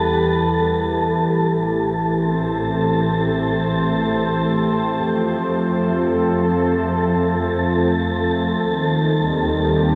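From the first moment, a detuned analog pad holds sustained chords beside an airy, wind-like tuned noise layer, while a bowed double bass section fades in beneath them across the full 9.9 seconds. This reflective, spacious ambient passage, cut from a longer piece, moves unhurriedly in a straight 4/4 through Em, Am7, F and Eb. The pad sits up front with a soft attack, long release and a warbling, vintage sawtooth character, thickened by lush chorus and shimmer reverb. The breathy noise texture, also up front, has a slow attack and carries its own built-in reverb plus shimmer. Down low, the dark ensemble bass plays with expressive vibrato and portamento and a smooth top. A huge, wet reverb with an 8.7-second decay and a dark, warm production make the whole space feel vast.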